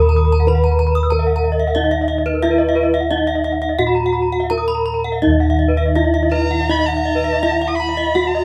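A straight 4/4 pulse moving between 82 and 96 BPM drives this brilliant, hypnotic excerpt of Balinese gamelan in Eb pelog, where a wooden-mallet bronze metallophone rings out the melody. Two more metallophones, struck with horn mallets, weave arpeggios above it: one bright, close-miked and dry, the other boxy as if in a small room, and all three shimmer with the beating of their paired tuning. Up-front bossed gongs played with padded beaters lay down a round, mellow bass throughout, and at 6.3 s a single bowed erhu enters up front with a rich, focused second line full of vibrato and portamento, all heard as a band playing live in one room with a wet studio reverb.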